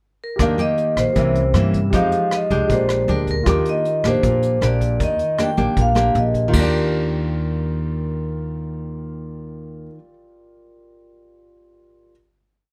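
A short, complete bossa nova piece in Eb major at 156 BPM opens with a brief vibraphone pickup, its medium mallets giving a metallic, ringing tone with the motor off, before the band enters at 0.4 seconds with a relaxed, breezy feel. The vibraphone carries a motif-based melody in song-like phrases, while a dark, full-bodied nylon-string guitar sits up front, fingerpicking thumb bass notes under syncopated plucked chords. An upright bass plays woody pizzicato lines on root and fifth in a dotted pattern, and a vintage brush kit with dark cymbals, a tight kick and rim clicks keeps a soft bossa groove with a rolled-off top, dropping out at 6.6 seconds. A grand piano, quieter in the mix, adds held rootless chords in a higher register, moving through Ebmaj7, C7b9, Fm9 and Bb13. The piece closes on a final chord from 6.5 seconds, with the piano ringing on alone until 12.1 seconds, all set in light reverb.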